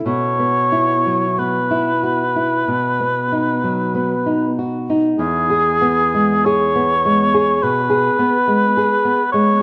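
A moderate scoring-stage reverb with a 2.1-second tail surrounds this short, lyrical romantic duo for oboe and classical guitar, cut from a longer piece. The tempo is slow and rubato, around 45-54 BPM in 4/4, in E major. The nylon-string guitar opens the passage, sitting up front with a dark, small, acoustic tone from fresh strings plucked with the thumb as it lays down the accompaniment. The oboe enters just after and carries the melody as a solo voice in classical style, its warm sound shaded by light vibrato and placed up front. The harmony rests on Bsus4 and then B, and at 5.2 seconds it arrives on E as the second phrase begins and runs to the close of the clip.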